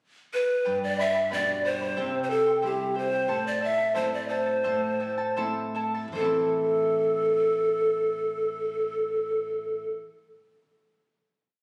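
Andean folk in A minor, earthy and festive, this short whole piece moves at 73-91 BPM in a straight 2/4, opening with a pickup bar in which the large pan pipes enter at 0.3 seconds to carry a breathy, reedy melody of song-like motifs with vibrato and a soft, chiffy attack, sitting close and up front. The charango joins at 0.6 seconds with bright, shimmering double strings in fingerpicked and strummed open chord shapes, and the nylon-string guitar follows at 0.7 seconds with full-bodied bass notes and chord figures holding the pulse through G, C and A minor. The tempo slows from 3.3 to 6.2 seconds before a final chord rings into a moderate recital-hall reverb, captured on a phone in the room.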